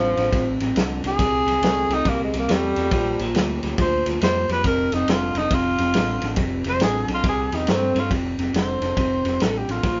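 A breathy tenor saxophone opens this soulful, rollicking electric blues shuffle in F mixolydian, joined at once by a slightly broken-up electric guitar riff through a small old amp and a round, foam-muted fingered electric bass, with a vintage drum kit arriving at 0.2 seconds. At 139 BPM with a 64 percent swing on the eighth notes, the band rolls through changes on F, C and Bb. Up front, the saxophone takes a jazz-style solo until 8.1 seconds, mellow and whispered, with vibrato, scooped notes and a soft attack. Beneath it, the picked guitar sounds lo-fi, the bass is dark and punchy, and the drums pair a punchy kick and medium-tuned snare with dark ride cymbals and a rolled-off top. The whole band plays live in one small room with light reverb and a dull, vintage top end, and the passage is cut from a longer piece.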